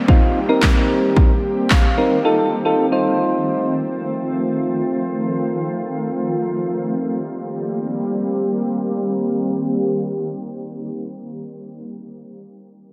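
A shimmering, ethereal pad opens this dance-pop fragment in C dorian, its detuned, wave-folded sine tones carrying chorus, built-in reverb, sidechain pumping and a low-pass filter over sustained Cm7 and F7 chords, with a very quiet electronic downlifter beneath it. Almost at once a punchy analog drum machine joins with tape-warm kick, snare and handclaps that sound re-recorded in a large room, but it drops out by 1.8 seconds. Soft, round electric-piano-like synth keys sit up front alongside the drums, their gentle triangle-and-sine tone treated with chorus, tremolo, slapback echo, sidechain pumping and a filter sweep, and they play a short fill before falling away at 3.7 seconds. From there the granular, octave-up shimmer of the pad carries on alone in free time, returning to Cm7 as the music moves into a new section, until it ends at 10.8 seconds. A lush hall reverb gives the whole fragment a big arena sound, and the mood feels bittersweet yet driving.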